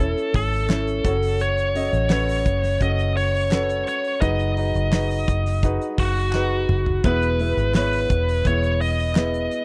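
A dry, close 1970s-style studio sound frames this uplifting, anthemic piano-driven pop passage, cut from a longer piece and moving at 85 BPM in a straight 4/4 in B mixolydian, with chords passing from A/E through F#m and B6/F# to E. A smooth, vintage grand piano carries the accompaniment beneath a bright, overdriven, picked lead guitar that sits up front with the melody. Low underneath, a round, punchy, foam-muted fingered electric bass anchors the tune, while a damped 70s drum kit with a fat snare and tight kick plays a fill from 6.3 to 7.0 seconds, and a very quiet, hollow group handclap enters at 0.7 seconds.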